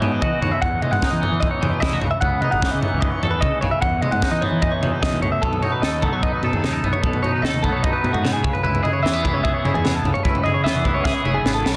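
A crisp fusion drum kit sits up front in a small, pumping room, its high-tuned snare and punchy kick driving this wistful, playful math rock and midwest emo excerpt in straight 4/4, with a drum fill from 11.0 to 11.8 seconds. A twangy electric guitar, also up front, plays bright picked accompaniment through a lush chorus, moving from Emaj9 to C#m11 and back. Above it, a clean electric guitar spins compressed arpeggios in a higher register, set in spring reverb. A fuzz fingered electric bass adds a round, overdriven low end. Around 5.4 seconds the harmony shifts to B7 and then C#m7, and the whole carries light reverb and a dense, heavily limited modern master.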